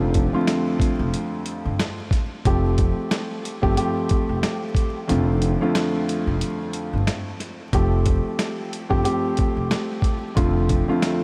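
Soaked in a huge, dreamy reverb and dusted with vinyl crackle, this short boom-bap hip-hop cut feels reflective and dark, with a gentle 16th-note swing. A mellow, boxy grand piano sits up front, filtered at both ends and trading between Dm7/F and Fadd9, while a woody pizzicato upright bass thumps low beneath it. A gritty, compressed sampler-style drum kit lays down hi-hat, snare and a thumpy kick with vintage 12-bit crunch, and the kick drops out between 5.1 and 7.7 seconds.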